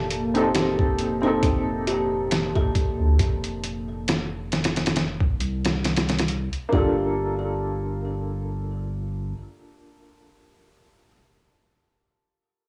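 A gritty, sampler-style trip hop drum kit sits up front, its pitched-down, compressed hits giving a thumpy kick, a medium-tuned snare and hi-hat a tape-softened weight and a gently swung feel in this brooding, cinematic fragment of a longer piece. A woody, slightly detuned upright piano carries the accompaniment with short-sustained chords, colored by tremolo and tape echo, and it plays on after the drums stop at 6.9 seconds, lasting until 11.1 seconds. Beneath it, a round analog bass holds deep, sine-like notes with a fast attack, while a delicate music box tinkles out bright arpeggios roughened by 12-bit sampler grit and tape echo. A dark, detuned sawtooth pad with a sub octave and chorus breathes in slowly under the opening and fades by 3.2 seconds. The harmony moves from F7 to Gm7 around 6.7 seconds, and the whole piece has the hazy intimacy of a small-room home cassette recording.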